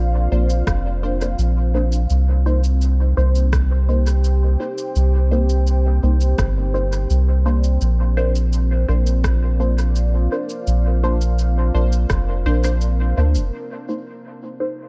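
Meditative and hazy, this short ambient dub excerpt drifts in a straight four-four pulse over a slow alternation between Bbadd9 and Cm7 chords. A dark, moody pad built from detuned sawtooth and sine layers with a sub octave holds sustained chords throughout, fading in slowly and lingering with a long release, softened by chorus and its own reverb. Up front, a round, soft sub bass with a triangle and square-wave tone sits deep beneath everything until 13.5 seconds. Muted, evolving chord stabs enter at 0.3 seconds, their detuned sawtooth plucks shaped by a moving notch filter and coloured by phaser, analog chorus, cassette tape and dub echo. In the background, an overdriven, layered electronic kick gives a deep thud, while a produced electronic cabasa and rim click add light texture with studio reverb and dub echo. The mix stays fairly dry overall, with the echoes doing most of the work to create its hazy atmosphere.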